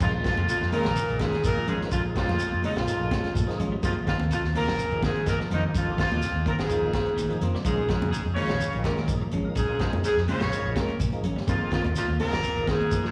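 Hypnotic and funky, this afrobeat groove at 126 BPM in Bb minor cycles between Bbm7 and Ab69, with a smooth horn section up front carrying the melody through plate reverb and slapback echo, shadowed by a very quiet, whispered alto saxophone and a raspy, gritty baritone saxophone on second lines. Beneath them a lightly overdriven tonewheel organ with chorus vibrato and slow rotary speaker sits in the background alongside a hollow-body semi-hollow guitar playing stabs and a barely audible clean guitar picking arpeggios, while a round, dark fingered bass anchors the low end. A saturated breakbeat kit with a punchy kick, high-tuned snare and rolled-off top drives the rhythm with ringing congas and a grainy shekere, all heard as a live gig through the venue's PA with recital-hall reverb.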